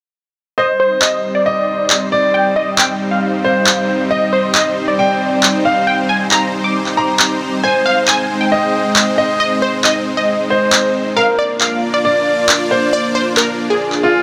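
In this euphoric, driving uplifting trance excerpt, a punchy, detuned supersaw stab carries the melody through a filter sweep and dub echo from 0.6 s, beside a clear baby grand piano second line with digital delay and audible action noise, as a lush supersaw pad enters with sustained chords over Cm, Ab and Bb and dry, up-front electronic handclaps arrive at 1.0 s, the whole sitting in a huge ambient reverb.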